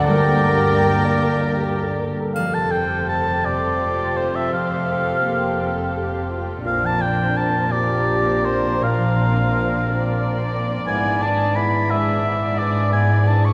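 Uplifting and hopeful, this short excerpt from a longer cinematic film score unfolds in a rubato 6/8 at around 52-59 BPM, moving through Gmadd9, Fadd9 and Bbadd9 before settling on E7/G#. A warm solo oboe sits up front with light vibrato, singing a second line that reaches as high as Db6, while a soft, floating violin section carries the melody in the background, bowed sul tasto. Beneath them, a darker, intimate chamber violin section and a close viola section add bowed lines, and a sustaining baby grand piano and a ringing, fingerpicked concert harp supply accompaniment and arpeggios. Cellos and woody double basses anchor the low end throughout. A distant flute group, a background clarinet and a very quiet, mellow French horn section are heard only in the opening 2.0 seconds, and a dry triangle touches in at 2.4 seconds as the second section begins. The whole ensemble is bathed in a wet, cathedral-like reverb with a 5.1-second tail, giving the orchestra a spacious, hall-filled sound.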